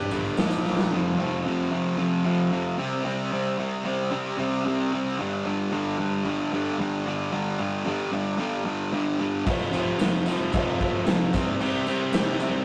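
A straight 4/4 pulse at 112 BPM drives this raw, swaggering garage rock excerpt, where a bright, double-tracked fuzz guitar riff sits up front over chords moving through Bb5, F5, C5 and G5; a punchy raw drum kit with a medium-tuned snare, kick and crash snaps in with a fill at 0.6 seconds before the guitar carries on alone from 0.9 seconds, and the drums return with a jingly tambourine in the background at 9.5 seconds, all captured in a rough rehearsal-room recording with tube saturation and light reverb.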